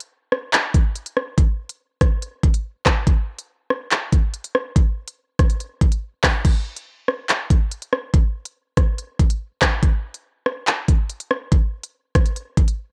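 Hip hop with a tense, ominous mood, this short cut from a longer piece moves at 142 BPM in 4/4 with a half-time feel. An electronic drill drum kit plays alone from 0.0 to 12.8 seconds, up front with a knocking kick, crisp hi-hats, handclaps, rim clicks and crash cymbal, all coloured by a cassette tape effect. The home-recorded cassette sound carries light reverb, and a new section begins at 6.4 seconds.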